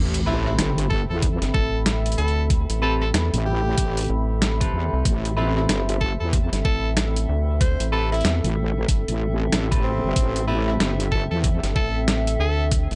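A raspy tenor saxophone with scooped notes and light vibrato carries the melody through analog delay in this swaggering, gritty glitch hop cut at 94 BPM in A minor with swung sixteenths, over an Am9 chord, backed by a heavy, detuned wobble bass and a rubbery, wave-folded square bass that joins at 1.4 seconds, a knocking electronic kick drum entering at 0.9 seconds over a pitched-down, compressed boom bap sampler-style kit of hi-hat, rim click and snare, clean electric guitar stabs with delay and sidechain pumping, a moody dark analog pad and a nostalgic, warbling tape-like pad with reverb sitting in the background, and a very quiet sub drop impact through the first 2.5 seconds, all in a dry hardware recording with dulled highs.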